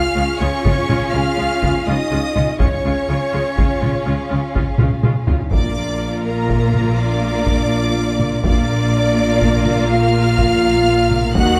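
Heavy-stick taiko drums drive this relentless, epic orchestral film cue in 12/8 at 82 BPM, entering at 0.7 seconds beneath a clear, focused violin melody, with a pure flute section and a background rich violin section carrying a second line below it, while dark, distant French horns and lush strings sustain chords over Db and then Bb, violas accompany, and cellos with smooth double basses anchor the bass, with a taiko fill at 4.8 seconds in this close-miked, lightly reverberant excerpt from a longer piece.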